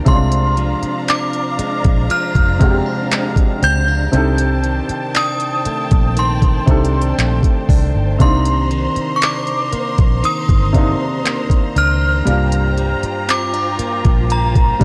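A slow, straight 4/4 groove at 59 BPM comes from a smooth R&B drum kit with a knocking kick, silky hi-hat and handclaps sitting up front, anchored by a dark, round, foam-muted electric bass, in this late-night, longing contemporary R&B cut in C minor. An intimate baby grand piano with audible action noise, a bright, clean, direct-recorded electric guitar playing picked arpeggios, and a lush bowed string section with vibrato and sidechain pumping fill out the harmony as it moves through Bb9, Cm13, Cm9 and Gm7. Above them, an inharmonic FM synth chime carries the melody with ringing, chorused tones, all captured in a dry, gritty recording with a cassette-tape character.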